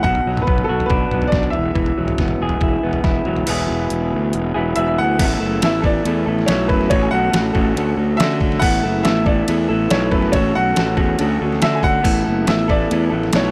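A straight 4/4 pulse at 140 BPM drives this jangly, upbeat indie rock cut in A major, with a detuned 8-bit drum machine giving a thumpy kick and a fill at 3.1 seconds before the kick and snare drop out until 5.2 seconds. A dark, slightly broken-up electric guitar riff sits up front beside a growly fuzz bass, while a woody upright piano carries the melody with audible action noise and slapback echo. From 5.2 seconds a mellow, vintage organ-string pad, phased and chorused, adds barely audible sustained chords, all captured in a dry, close 1970s-style studio sound.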